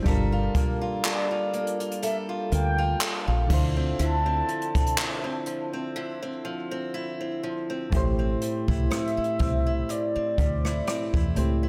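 A slow, lightly swung 4/4 at 61 BPM sets a late-night, sensual contemporary R&B groove, carried by an up-front jazz brush kit with a boomy kick, dark cymbals, rim clicks, hi-hat and handclaps, over a deep, foam-muted dub bass that sits round and punchy at the front of the mix. Chorused electric-piano-style synth keys and a boxy, ladder-braced acoustic guitar picking delayed arpeggios, finger squeak and all, fill out the Gm9 to Dm9 harmony. From 1.1 seconds a mellow, horn-like synth lead sings sustained lines with vibrato, chorus and delay, while a barely audible detuned pluck adds texture until 6.8 seconds, partway through a break that gives way to an Am7 section at 7.9 seconds, all in a small, lightly reverberant room.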